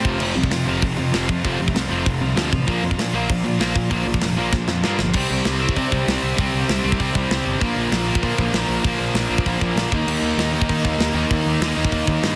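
An up-front, tight metal drum kit drives this rowdy, upbeat punk rock clip at 195 BPM, its bright cymbals and tight, softly clipped kick leading a fill from 4.5 to 5.1 seconds into a new section. Three picked guitars play the riff over F, Bb, C, Bb and Eb chords: a warm, overdriven, compressed one, a cranked stack guitar hanging in the background, and a very quiet, double-tracked, scooped high-gain guitar adding a faint, bright edge. A growly fuzz bass rounds out the dense, heavily limited, nearly dry mix.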